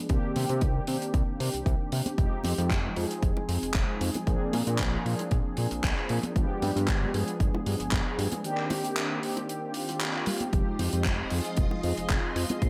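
A mellow synth brass sits up front, its round, dark, detuned tone colored by chorus, a filter sweep, sidechain pumping and dub echo as it carries the accompaniment through this sleek, groovy nu-disco cut from a longer piece. Beneath it, a fat, saturated analog bass holds the low end with a thick sawtooth growl, while a punchy, layered electronic kick anchors a lightly swung 4/4 groove. A dry, damped 70s drum kit adds handclaps and hi-hat, and congas and bongos played with hard hands sit in the background. The chords move from Cm9 through Fm7, Bb9 and G7b9 before returning to Cm9. A background electronic swell appears at 9.7 seconds, and at 10.5 seconds a lush, vintage string machine ensemble enters with slow-attack sustained chords, full-bodied and colored by ensemble chorus, under a light overall reverb.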